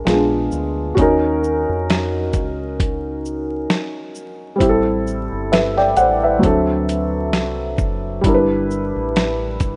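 A felt-muted upright piano opens this nostalgic, dreamy lo-fi hip hop fragment, cut from a longer piece, with a soft, intimate tone that sits up front and carries a cassette tape coloring. A deep dub fingered electric bass and a dusty soul sampler-style drum kit join at 0.1 seconds, settling into a slow 66 BPM groove in 4/4 with a light swing on the sixteenths. The drums sound compressed and gritty, built from a thumpy kick, a medium-tuned snare, hi-hat and shaker, and they also sit close in the mix. Underneath, the bass is dark and round, heard direct and amped and kept low in the balance. The piano's mellow chords move from A#7 and D#m7 through Am7 and D7 to a closing G6. The dry, rough home-demo sound carries vinyl crackle and a muffled top end, adding to the hazy, bedroom feel.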